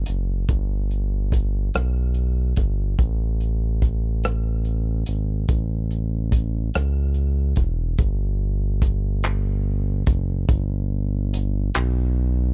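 A dry, close, up-front sound carries this tender, warm slow R&B fragment in 6/8 at 48 BPM, where a smooth, mellow synth bass with a sawtooth-and-triangle tone holds sustained low notes from E1 to C#2 beneath an acoustic soul drum kit of tight kick, hi-hat, rim click and handclaps, its rolled-off top and pumping room sitting close, with the bass starting at 0.0 seconds, the kit entering at 0.1 seconds, and the groove shifting into a new section at 8.0 seconds.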